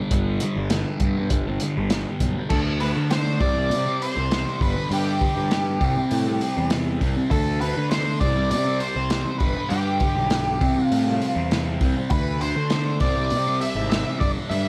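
A light reverb and a small room ambience frame this short psychedelic rock excerpt, trippy and hypnotic at 100 BPM in a straight 4/4 and G major. A thick, double-tracked fuzz guitar plays the riff up front from the start, its dark distortion colored by a phaser, while an overdriven fuzz electric bass, picked and warm, holds down the low end. The gritty, saturated breakbeat drum kit sits forward with a tight kick, medium-tuned snare, hi-hat and crash cymbals whose rolled-off top keeps them dark. At 2.5 seconds an octave-fuzz lead guitar enters with the melody, its distorted tone trailed by tape echo. Underneath, the harmony cycles through G, D and C, giving the groove a steady, circling pull.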